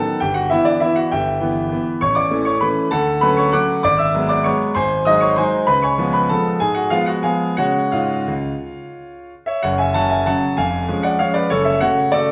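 Nostalgic and bittersweet, this short classical piano waltz moves in a rubato 3/4, with the tempo flexing between 168 and 212 BPM. A bright concert grand plays alone for the full 12.3 seconds, its brilliant, open tone reaching from deep bass notes up into a ringing treble, sitting up front with long sustain. The opening phrase drifts through Em/G, A and Dmaj7 before darkening with G#m7b5 and a chain of dominant chords that settle on C#. At 9.6 seconds the music turns to a new section in F# minor, passing through C#/E# and returning to F#m. A moderate recital hall reverb gives the instrument a natural sense of space, and the passage is cut from a longer piece.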